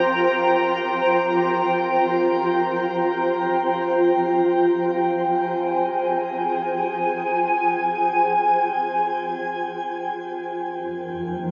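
Serene and spacious, this ambient fragment, cut from a longer piece, drifts in free time in F minor. A single granular cloud pad carries it alone, spanning F3 to Bb5 and sitting up front with a mellow, blurred, wave-folded triangle tone that keeps evolving as it sustains. Its slow attack and long release let each sound bloom and fade gently, while its own built-in reverb and delay add to the haze. The harmony opens on an F5 before settling onto F minor at 4.0 seconds, then shifts to Eb over F at 10.4 seconds. A wet shimmer reverb with a 7.5-second decay surrounds the pad, and the top end is trimmed at 7.5 kHz, giving the sound a soft, dusky sheen.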